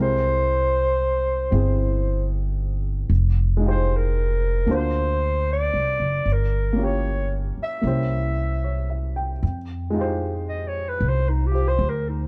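A growling, raspy clarinet carries the melody over an intimate baby grand piano with audible action noise and short sustain and a woody, thumpy pizzicato upright bass in this smoky, melancholic F minor jazz ballad at 76 BPM with a gentle swing, the clarinet's subtone, light vibrato and scooped notes stepping forward into a solo at 9.4 seconds within a dark, dry production.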